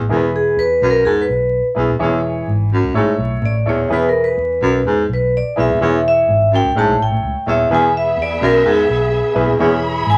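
An uplifting soul piece at 126 BPM in E major opens with a roomy baritone saxophone riff, played with vibrato and scooped notes, over a round, punchy, foam-muted electric bass and a clear concert grand piano with short sustain. A metallic, ringing vibraphone played with medium hard mallets and the motor off takes the up-front solo melody as the harmony cycles through E, C#m/E and A. At 7.7 s a dark, bowed studio string section adds an expressive second line, all set in a small room with vinyl crackle on this excerpt from a longer piece.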